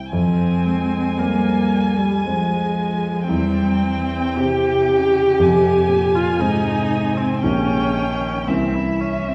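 Violin and grand piano open together in this melancholic, solemn fragment of a slow romantic movement for piano quartet in F minor, moving at 53-60 BPM in a rubato 3/4. The violin sings a distant, smooth melody with vibrato, while the present, long-sustaining piano and the up-front viola, even and bowed, hold the accompaniment; the cello adds an expressive second line in the background, with soft attacks and portamento. Harmonies travel from Fm through C/E and Ab to a tense C7b9 at 8.5 seconds, all bathed in the wet reverb of a recital hall heard from further back in the room.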